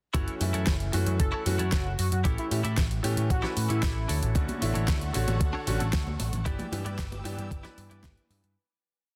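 Feel-good and groovy, this short nu-disco piece at 114 BPM rides a thumpy, tape-warm four-on-the-floor electronic kick, a pop kit with a fat snare and bright hats on the disco backbeat, and a round, up-front picked bass jumping octaves under F#m7, A7, Dmaj7 and G6 chords. Brilliant grand piano stabs with sidechain pumping and dub echo join twangy, direct-recorded clean guitar funk chords with subtle chorus, while a thick, detuned sawtooth unison lead plays short answering phrases from 1.2 to 4.1 s. From 4.3 s, high-tuned congas sit distant in the background, and from 4.4 s a lush, bowed symphonic string pad pumps beneath as the whole piece fades out from 5.8 s, all in a dense, heavily limited, dry modern mix.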